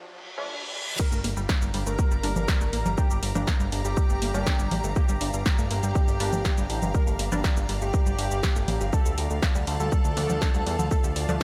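Lightly reverberant and trimmed in the low end, this cinematic, hypnotic melodic techno excerpt opens with a riser and reverse cymbal under a muted, deep filtered dub chord stab, then drops at 1.0 seconds. An overdriven, up-front electronic kick leads a tape-warm analog drum machine of congas, crash cymbal, hi-hat, shaker and punchy snare, while a fat, nasal analog bass and a tight, driving sequenced arpeggio pump beneath a bold, bright unison lead with vibrato and tape echo. Behind them, an evolving, morphing wavetable pad with phaser and a lush, bowed symphonic string section enter at 1.2 and 1.3 seconds, filling out the background.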